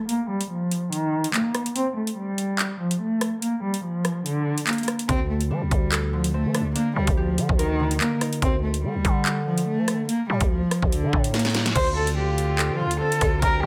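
A dark, menacing drill hip hop piece in D phrygian at 144 BPM with a half-time feel opens on an up-front, woody bowed cello melody with vibrato, muffled by a low-pass filter, joined by brief ringing fingerpicked harp and produced electronic drums with a knocking kick, sharp snare, metallic hats, handclaps, rim clicks and crash. At 5.1 seconds the harp returns under the cello as a growling, buzzy 808-style bass enters over chords moving from Dm7 to Eb/D and Dsus4. After a drum fill, a soft, floating string section slips into the background at 11.8 seconds on Dm7, all within light small-room reverb.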